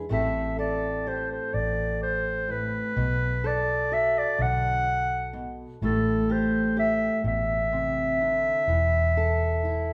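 Intimate and heartbroken, this slow A minor folk excerpt in 6/8 at 42 BPM sets a clear, up-front classical-style clarinet melody over a dark, fingerpicked steel-string acoustic guitar and a round, punchy foam-muted electric bass, moving through Am7, Bm7 and Esus4 as the trio plays live in one room bathed in a wet large studio reverb.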